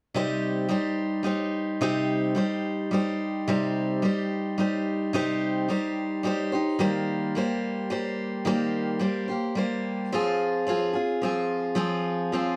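Lightly reverberant and up front, this short cut from a longer rock piece features a lone picked steel-string acoustic guitar with an auditorium-like body, moving through Cm, Eb6 and Fm in C minor at 108 BPM in a straight 3/4 feel, its reflective, dusty mood settling into a new section at 3.5 seconds as it ranges from C3 to C5.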